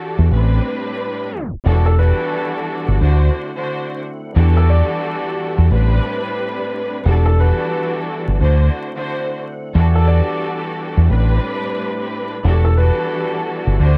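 A deep, round dub bass, fingered and up front, anchors this moody, tough hip hop cut in E minor at 89 BPM, with a swung 16th-note feel over a lush bowed string section that carries the Am11, Em11 and D7 changes. During a tape stop from 1.3 to 1.7 seconds, a gritty overdriven tonewheel organ enters at 1.6 seconds and sits in the background with chorus vibrato and a slow rotary speaker, while an intimate, woody upright piano with audible action noise and tape echo plays the melody from 1.9 seconds. The strings, organ and piano are filtered through cassette tape, and the whole home cassette recording carries light reverb and vinyl crackle.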